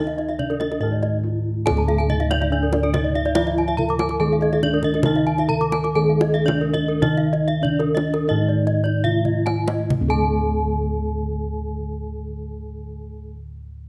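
This Balinese gamelan excerpt opens with bronze metallophones and bossed gongs together: a mellow, airy melody with shimmering paired-tuning beats, a bright accompaniment set in the background, and two layers of ringing arpeggios over round, beating gongs placed up front. A tight, dry kendang struck with hard hands joins the ceremonial, brilliant music in a straight 4/4, with the tempo ranging between 66 and 142 BPM. The pace slows from 5.1 seconds, and a drum fill leads into a new section at 9.9 seconds, where the kendang falls silent at 10.3 seconds while the metallophones ring on in light reverb.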